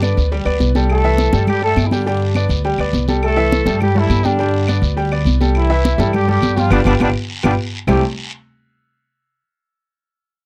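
The recording is dry and close, with the feel of a 1970s studio session, and it is cut from a longer piece. It is a sunny, festive salsa in C major at 206 BPM in 4/4, moving between G and C6 chords before a G7 pushes back to C6. A punchy, tight trombone section carries the melody up front with a light vibrato and smooth top, while a brilliant baby grand piano with long sustain fills in the accompaniment beside it. A dark, woody pizzicato upright bass on steel strings sits close and anchors the low end, and high-tuned, damped congas played with soft hands drive the rhythm, joined by raspy guiro and distant claves heard in the background of a large room. The band hits an accent from 6.7 seconds, a fill arrives at 7.4 seconds, and a new section begins at 7.9 seconds.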